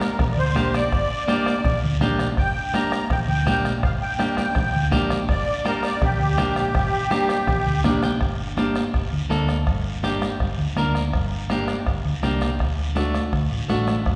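Fiery and passionate, this cumbia in G minor moves at a brisk 164 BPM in a straight 4/4, a short slice cut from a longer piece. A reedy, shimmering musette accordion sits up front and takes a solo from the start, ranging from G4 to Bb5 before it stops at 7.8 seconds, just as a dark, clean, picked electric guitar slips in a brief fill. That guitar carries the accompaniment throughout, while a round, amped hollow-body bass enters at 0.2 seconds and holds the low end between G1 and D2. The percussion blends a soft-beater bombo, high-tuned congas with a thick, damped skin tucked into the background, and a raspy, band-limited guiro. The harmony rests on G minor until a shift to D at 12.6 seconds, and a lush reverb lends the whole a church- or concert-hall spaciousness.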